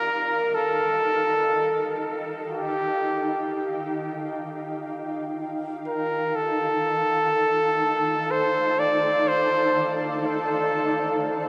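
In free time and Eb lydian, this luminous, weightless ambient excerpt floats in a huge, dreamy reverb with a cassette-tape haze, and a clear, close-miked flugelhorn sings an up-front, classical-style solo melody between G4 and D5 through an analog delay. Beneath it, a dark, blurred granular cloud pad fades in with evolving, detuned sustained chords, moving from Ebadd9 to Dm/Eb at 6.4 seconds under its own reverb and subtle chorus. A very quiet felt-muted upright piano adds soft, intimate arpeggios on C4 only until 1.3 seconds.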